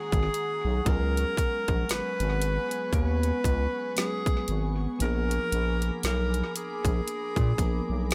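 Sensual and moody, this slow contemporary R&B excerpt at 58 BPM with a swung sixteenth-note feel sets a breathy, subtone alto saxophone with light vibrato and scooped notes up front over a growling FM bass, a trap kit with a hard-clipped kick, woody snare and metallic hats, a dreamy chorused and tremolo-laden FM electric piano in the background, and a glassy, ethereal pad, all in an echo-heavy, dry mix moving from Ab9sus4 to Bb7b9 at 5.0 seconds.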